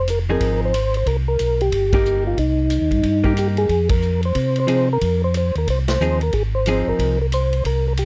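Swung eighths in 4/4 drive this bluesy, late-night soul jazz organ trio fragment, where a soft, flute-like tonewheel organ with percussive attack and slow rotary speaker carries the melody over a round, dark, lightly overdriven organ bass, a big-room acoustic drum kit with punchy kick and ride cymbal, and a clean, compressed hollow-body archtop guitar accompaniment moving through Fm7 and Cm7, with the band hitting accents at 1.9, 3.9 and 5.8 seconds in a dry, close 1970s-style studio sound.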